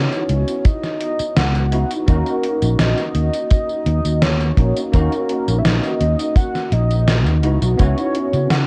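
A straight 4/4 groove at 84 BPM opens this nostalgic, hazy vaporwave fragment, with a gated 80s digital drum machine sounding hi-hat, tambourine and a gated-reverb snare that feels re-recorded in a small room, while a dry, tight acoustic kick sits up front from 0.7 s. A punchy, amped fingered electric bass and a bright, bell-like tine electric piano with ensemble chorus carry the harmony from C#m11 to D#m7 and back. Above them a velvety, dark synth lead with chorus, tremolo and tape echo sings the melody, all coloured by worn cassette tape with warbly pitch drift and a faint mains hum.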